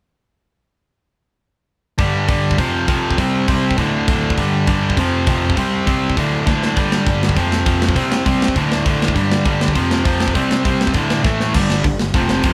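A bright, overdriven electric guitar sits up front alongside a sludgy second overdriven guitar, both starting at 2.0 seconds and picking a fast punk rock riff at 201 BPM that cycles through G5, F5, C5 and D5 power chords before a brief A5 push. A tight, acoustic drum kit with a medium-tuned snare and a rolled-off top drives the energetic, upbeat 4/4 groove with crash, hi-hat, kick and snare, adding two fills along the way. A growly fuzz bass enters only at 11.5 seconds, and the band sounds like it's playing live together in a large studio with moderate reverb.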